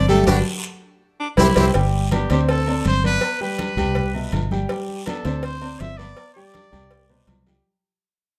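Moderate studio reverb gives this short excerpt from a longer salsa piece a lively, roomy sheen, and the whole passage fades out from 1.7 seconds onward. At 163 BPM in a straight 4/4 and G major, the mood is sunny and festive. A brilliant, punchy horn section states the opening melody over a band accent and drum fill, while a gritty baritone saxophone adds a brief second line with scooped notes. From 2.1 seconds a clear trumpet with light vibrato takes the lead, sounding distant yet up front. Underneath, a mellow, vintage baby grand piano with long sustain plays chords such as Gmaj7, Cmaj7, Gadd9 and D7sus4, and a round, foam-muted fingered electric bass sits up front in its low range. Congas with a thick skin, a tight high-tuned cowbell, and ringing agogo bells and timbales sit in the background, joined by a raspy guiro, with another drum fill near the end.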